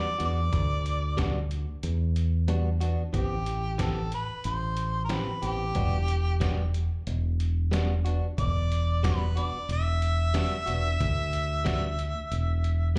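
An up-front harmonica with vibrato, scooped notes and overdriven slapback echo carries a smoky, mournful jazz-style melody in this straight-eighth soul blues at 92 BPM in E minor, backed by bright, clean guitar stabs, a dark, round fingered bass and a gritty, pitched-down trip hop sampler-style kit whose kick and snare drop out from 2.5 to 3.1 seconds, over Em9 and Am9 chords, all heard as a live gig through the venue's PA with club reverb.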